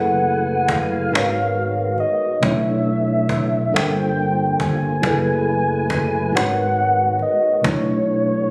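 Late-night and yearning, this slow six-eight R&B excerpt sets a horn-like, soft-attack synth lead with chorus and slapback echo up front over mellow tine electric piano, a clear tonewheel organ with key click and slow rotary speaker in the background, a round, dark fingered bass and a woody cajon played with hard hands from 0.7 s, all captured on a phone in the room with light reverb and compression.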